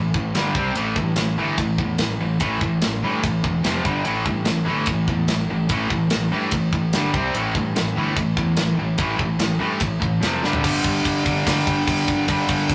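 Straight 4/4 at 146 BPM in A phrygian drives this epic, relentless heavy metal excerpt, as an up-front high-gain guitar and a compressed distorted guitar in the background pick the riff over growly fuzz bass and a tight, mid-forward drum kit with bright cymbals, until a drum fill at 10.4 s leads into half time at 10.6 s, where a distant, very quiet chamber string section enters with focused, bowed sustained chords with vibrato on Gm, the whole take carrying the rough rehearsal-room sound, warm saturation and moderate reverb.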